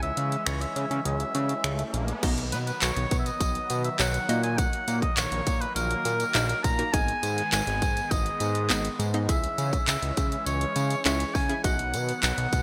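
Dance-pop at 102 BPM in 4/4 with a straight feel in B major, this short cut from a longer piece has an upbeat, summery mood and a bright, 1980s-style digital sheen with light reverb. A clear, classical-style oboe carries the solo melody up front with light vibrato. Beneath it, a hollow, bouncy square-wave pluck with chorus and a filter sweep supplies the accompaniment, while an evolving supersaw swell holds soft, sustained chords in the background, and a fat sawtooth bass anchors the low end; all three pump against the sidechain. The punchy, layered house kit of kick, hi-hat, handclaps, finger snaps and crash sits up front, its kick dropping out at 1.1 seconds as a very quiet electronic riser enters at 1.2 seconds. At 2.2 seconds the kick returns and a jingly, saturated tambourine joins in the background as the chords move through B, D#m/A#, G#m, C#m and back to B.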